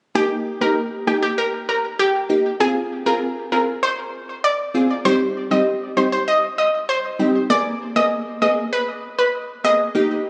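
This dancehall piece, cut from a longer recording, has a sunny, summery mood in a straight 4/4 feel. A crisp, detuned wavetable chord stab carries the accompaniment from 0.1 s, its triangle tone shaped by a filter pluck and a moving notch, with a fast attack and a decaying tail. It plays a sequence of Eb, Fm, Cm/G and Abmadd9. Above it, an analog pluck takes the melody from 0.2 s, a round, warbling, vintage sawtooth sound with a filter sweep, a short decay, chorus and delay. Both parts sit up front, yet the whole piece is bathed in a lush hall reverb and club ambience, with the compressed, roomy sound of a phone recording.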